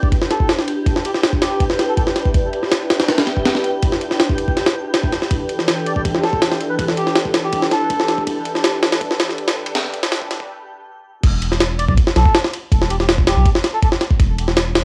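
A compressed, pitched-up jungle sampler kit with a thumpy kick, high-tuned snare, ride and crash sits up front, driving this dark, raw drum and bass excerpt on a cassette-worn, home-recorded footing. Through the build-up a lush, detuned sawtooth pad with chorus, phaser and 12-bit sampler grit carries sustained chords under a filter sweep, while a twinkling granular shimmer glints in the background and a reedy, breathy melodica drops in short dub-echoed phrases. After a brief break at 10.5 seconds, the drop at 11.2 seconds brings in a deep, saturated sine sub bass beneath the drums and a final melodica line.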